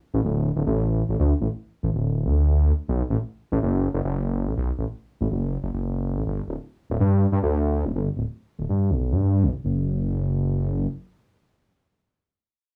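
IDM at 142 BPM in a straight 4/4, glitchy and intricate in mood, this fragment of a longer piece is carried by a dark, detuned sawtooth bass that sits up front from 0.1 to 10.9 seconds, deep and saturated with a beating unison, all heard through worn, warbling cassette tape with pitch drift and a small, dry room.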